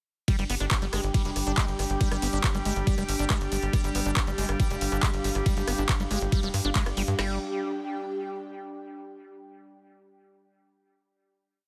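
Light reverb gives this short psychedelic trance piece a slight sense of space, and it opens straight into a driving, intense drop at 139 BPM in a straight 4/4. Up front, an overdriven garage kit pounds a four-on-the-floor knocking kick with a woody snare and crash, layered with an overdriven techno kit of programmed hi-hats, ride, rim click and a handclap backbeat. Beneath it, a tight, punchy sequencer bass of sawtooth and square waves rolls in sixteenth notes with a filter pluck, while a squelchy, resonant acid line runs a 16-step accented riff through phaser, dub echo and sidechain pumping. Above, an overtone-sweeping drone of sawtooth and sine holds a high note and sustained chords from 0.7 seconds, its moving overtones carried by chorus and its own reverb. An airy, breathy pad with a detuned noise layer shifts slowly between mellow chords, pumping with the beat, and it rings on through the final chord from 7.2 to 8.9 seconds.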